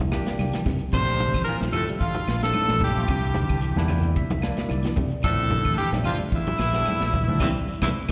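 A tight funk drum kit drives a joyful afrobeat groove in 4/4 with a light sixteenth-note swing, its dry snare and tight kick set against soft-handed, ringing congas and woody claves in the background. A round, punchy fingered bass sits up front, while a clean, picked electric guitar spins arpeggios in the background through chorus and echo. A barky tine electric piano, bright through a combo amp with phaser, comps on C9 and Bbmaj7 chords and plays a fill from 3.6 to 5.2 seconds. From 0.9 seconds the horns arrive: a breathy, whispered tenor saxophone carries the melody up front with vibrato and scooped notes, while a brilliant, forceful trumpet and a raspy, gritty baritone saxophone add second lines in the background. The band hits an accent on a closing C7 at 7.4 seconds, and the whole short cut sounds like a live gig heard through the venue's PA, with a moderate club reverb.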